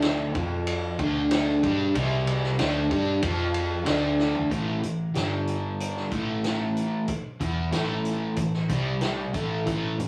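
Blues rock and southern rock power-trio excerpt in A minor at 93 BPM, gritty and smoky, with an up-front, overdriven, double-tracked semi-hollow guitar riff shimmering with harmonic tremolo over a dark, round, foam-muted picked bass and a vintage drum kit with punchy kick, dark cymbals and a rolled-off top, all in a rough rehearsal-room recording with light reverb, a drum fill at 4.2 seconds leading into a second section that moves through A5, G5 and C5 power chords.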